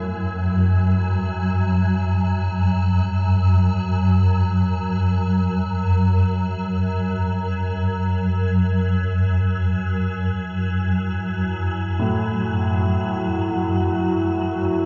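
In free time, this dark ambient drone fragment drifts with a desolate, ominous mood, submerged in a huge, wet reverb that lingers for about 7.5 seconds. Up front, a swarming drone holds the low register throughout, its detuned, granular tone feeling tense and ever-evolving as a moving notch shifts its color within its own built-in reverb. Behind it, a grand piano with a smooth, vintage character plays arpeggios in the background, scattered by a diffuse ambient delay. At 11.4 s a deep, moody pad enters with sustained chords above, its mellow sawtooth-and-sine body thickened by a sub octave and chorus. The piece sits on a single harmony and is cut from a longer work, so it ends mid-flow at 14.9 s.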